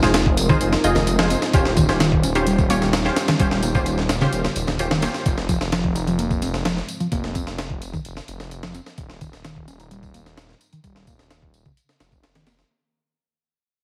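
A gritty, pitched-up breakbeat kit with a thumpy kick and high-tuned snare opens this energetic, funky breaks excerpt up front, joined at once by a tape-colored tambourine in the background, very quiet hard-hand congas and bongos, a menacing saturated detuned saw bass, bold bright orchestra-hit-like stabs with reverb and delay, and a moody analog pad with chorus and sidechain pumping. At 0.5 seconds a round, hollow-body picked electric bass riff enters through a low-pass filter and delay, while the stabs and hand percussion drop out near 5 seconds. The whole passage sits in moderate plate reverb with a heavily compressed, radio-like sound and vinyl crackle, cycling between Fm7 and Eb13 as it fades out throughout.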